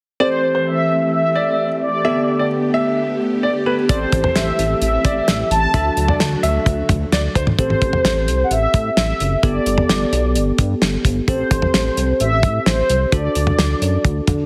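A straight 4/4 pulse drives this nocturnal, melancholic synth-pop passage, cut from a longer piece. A mellow, detuned synth brass carries the melody up front, round and dark with chorus and digital delay, over a bell-like tine electric piano that plays bright, clean accompaniment throughout. At the start, a clear concert grand piano adds a polished second line with audible action noise and its own delay, while a vintage string-machine viola section holds soft-attack chords through a phaser and ensemble chorus. At 3.9 seconds a dry, damped 70s drum kit arrives with a tight kick and medium-tuned snare, alongside a glossy, evolving synth bass built from pulse and sawtooth waves with a filter pluck. The grand piano and strings drop out by 7.6 seconds, and the brass, electric piano, bass and drums go on to circle the same Am7, Gadd9 and D progression in a lush hall reverb, all pressed into a heavily compressed radio sound.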